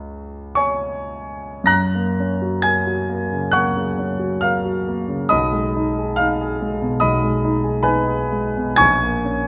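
Romantic classical nocturne for solo grand piano, dreamy and nostalgic, moving at an unhurried pace with a flexible, rubato feel. The warm, natural-sounding piano sits up front and spans from deep bass to high treble. A moderate recital hall reverb softly surrounds it through this short excerpt cut from a longer piece.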